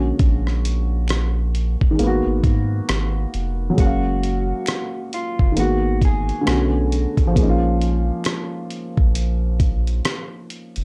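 A dry, gritty hardware recording with only a light touch of reverb sets a hazy, reflective tone for this lo-fi hip hop excerpt, which moves at a slow 67 BPM in 4/4 with a swung sixteenth-note feel. A dark upright piano carries the accompaniment up front, its woody, mellow tone slightly detuned and intimate, with audible action noise, cassette tape coloring and plate reverb. Beneath it, a soft dub sub bass sits deep and round, its sustained triangle and square wave tone given a fast attack and transformer saturation. The dusty soul sampler-style drum kit arrives at 0.2 seconds, compressed and up front, with a thumpy kick, hi-hat and rim click re-recorded in a large room, while a human finger snap, close and acoustic, joins in the background from 1.1 seconds. Over this, an electric guitar through a small old amp picks a slightly broken-up, lo-fi melody, bathed in tape echo and plate reverb, until it stops at 7.3 seconds, while across the excerpt the harmony drifts from A#7alt and G#m7 through F#maj7, G#m9, Bm7 and A#m7.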